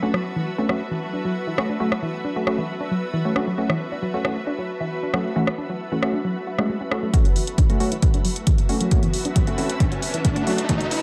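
This is a short cut from a driving, hypnotic peak-time techno track at 135 BPM in a straight 4/4, sitting on an F# minor chord and tuned to A4 = 441 Hz. From the start, a round, nasal analog pluck plays a riff with chorus, phaser and delay. Digital, detuned wavetable chord stabs punctuate it while a cloudy, evolving granular pad hovers above, and all three breathe with sidechain pumping. A punchy analog drum machine keeps hi-hats and rim clicks going throughout, its filtered, pumping hats carrying a large-room character. At 7.1 seconds a build-up begins: an up-front electronic kick enters, a filter sweeps across the synth arpeggio sound, and an electronic riser joins at 8.4 seconds before a drum fill at 10.7 seconds. The production is dark and high-passed, with light digital reverb giving it a subtle sense of space.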